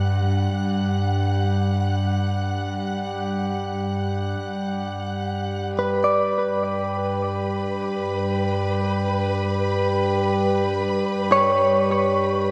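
A wet spring reverb hangs over this echo-heavy recording, giving the ambient piece a glowing, luminous air. In free time and G lydian, it rests on a single Gmaj7 chord, with a studio cello section holding a low G2 bass up front, its bowed sul tasto tone soft in attack, pure and floating, and gradually fading out across the 12.5 seconds. Above it a hand-pumped harmonium drones from G3 to G4, reedy and breathing in a boxy small room, fading in alongside the violin section. The bowed violins spread a lush, expressive texture high between B4 and F#6 with vibrato, also growing from silence over the whole span. At 5.8 s a direct-recorded clean electric guitar enters up front with bright, twangy, compressed picked arpeggios between B4 and D5, each note trailed by tape echo. The passage is cut from a longer piece and carries a warm mood throughout.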